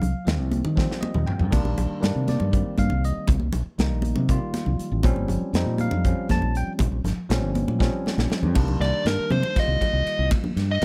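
Straight eighths in 7/8 at 239 BPM drive this bright, soaring fragment of electric jazz fusion. A punchy, up-front studio drum kit pumps in its room alongside high-tuned, thin-skinned congas struck with hard hands, while a warm fingered electric bass anchors chords moving from Eb69 through Cm9 and Bbm6. A bell-like, clean tine electric piano comps throughout and joins the drums for a fill at 0.8 s, the kit fills again at 7.8 s, and at 8.8 s a dark, overdriven lead guitar with slapback echo takes a picked solo up front over the studio ambience.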